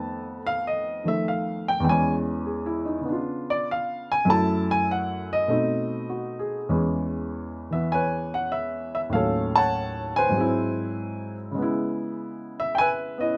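A baby grand piano sits up front in light reverb, its natural, warm tone marked by a short sustain. This relaxed, playful solo jazz passage in E major swings at 99 BPM in 4/4, tuned to A4 = 438 Hz. Cut from a longer piece, it runs 13.4 seconds, moving from an F7#11 opening through E6 and altered dominant chords to close on C#m7.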